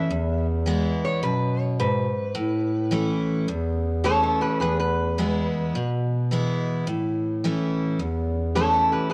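Down-home and easygoing, this short honky-tonk and classic country excerpt swings at 106 BPM in A major, with a nasal, metallic lap resonator guitar playing a fingerpicked slide melody with a steel bar up front, a full-bodied picked dreadnought acoustic guitar picking out accompaniment, and a dark bass clarinet with light vibrato carrying a jazz-style bass line, all swaying between E and A chords under light reverb and the warbling pitch drift of worn cassette tape.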